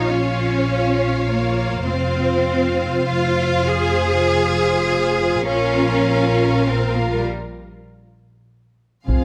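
A focused cello section anchors the bass of this dark, dramatic slice of epic orchestral film score in 3/4, bowed with vibrato up front beside woody double basses. Above them, a lush violin section carries the melody over a soft-attacked second violin line, while intense violas accompany and a distant, roomy French horn section holds sustained chords in the background. The harmony moves between Bbm and Fm under light reverb, and after a break from 7.3 seconds, a close, heavy taiko ensemble hit lands at 9.1 seconds as the piece is cut off.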